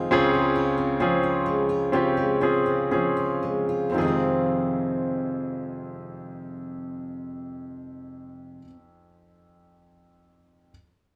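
A wet, roomy studio reverb surrounds this brief pop fragment, with the players sounding as though they share one large room. The mood is heartbroken and melancholic, in F minor at a slow 56 to 70 BPM in a straight 4/4, and the pulse slows down across the first 4 seconds. A clear, natural grand piano sits up front with the accompaniment, while a full-bodied jumbo steel-string acoustic guitar, also up front, plays fingerpicked arpeggios where finger squeak can be heard. The harmony rests on Dbmaj7 before moving to Fm7 at 4.0 seconds, marking the start of a second section. The guitar stops at 8.8 seconds, leaving the piano to carry on alone until it ends at 10.7 seconds, as the fragment is cut from a longer piece.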